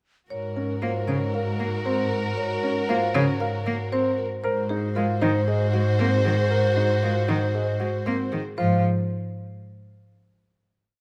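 Closely miked and detailed with a light reverb, this short, complete piece of minimalist classical pattern music moves at 116 BPM in a straight 4/4, hypnotic and propulsive in Ab mixolydian over Gb/Ab and Ab9 harmony. A woody rosewood marimba carries the melody in a repeated short cell, joined at 0.6 s by a worn baby grand piano's long-sustaining arpeggio cell and at 0.8 s by a single bowed cello's focused, vibrato accompaniment figure, while an airy, hollow alto flute sits in the background with swelling held notes. Beneath them a rich, bowed chamber string section holds sustained chords and an up-front, expressive double bass section sounds long Ab notes, before the piece closes on a final chord at 8.6 s.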